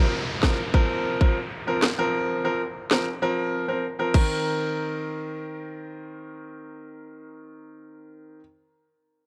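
A brilliant, up-front grand piano pumps against a sidechain through Fsus4 and then Cm7 in this bouncy, sultry dancehall fragment at 97 BPM in C minor, joined at 0.4 s by a tight, electronic island pop kit of crash, sharp snare, rim click and kick (the kick dropping out at 3.2 s), while an electronic downlifter runs beneath until 4.5 s, the whole recording carrying light reverb and the worn, warbling pitch drift of old cassette tape.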